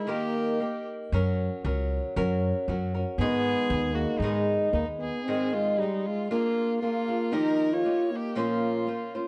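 Dramatic and passionate, this short mariachi folk excerpt at 116 BPM in a rubato 2/4 moves from G# minor to Ab major at 5.3 s, with a dark, smooth classical French horn carrying the melody up front as a rich, bowed violin with vibrato traces a second line, both pausing briefly and returning at 3.2 s, over a bright, fingerpicked flamenco guitar with fresh strings and a woody pizzicato upright bass heard from 1.1 s to 5.1 s, all captured close and detailed in light reverb.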